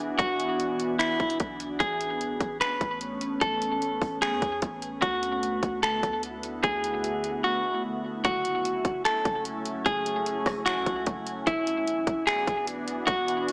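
A half-time trap beat of hard-clipped kick, bright hats, finger snaps and rim clicks sits up front in this spacious, hazy cloud-rap excerpt, as a clean, picked semi-hollow electric guitar carries a low-pass-filtered, delayed melody over a glassy, ethereal FM pad that pumps beneath its chorus and reverb, with a deep, boomy 808-style bass in the background and a lush hall ambience heard through a small-speaker sound.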